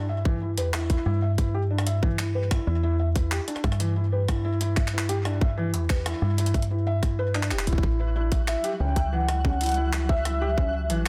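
A felt-muted upright piano opens this eerie, intricate IDM excerpt, its soft, intimate arpeggios in E minor carrying audible action noise and a trail of delay, while a metallic FM bass sits up front with a dark, fast-attack, decaying tone. At a straight 93 BPM in 4/4, a tight, produced electronic kick enters at 0.3 seconds, followed by a gritty, pitched-up jungle sampler-style kit of handclaps, hi-hat, rim click and toms, compressed and tape-toned, with soft clipping on its snare and tape echo. The harmony holds on E minor before moving to A at 7.8 seconds. Near the end, a flickering, granular texture drifts in the background, soon joined at 8.5 seconds by a velvety, detuned synth lead with chorus, vibrato and tape echo, sustaining a short line between E5 and G5. The mix has light reverb and a dense, heavily limited modern master.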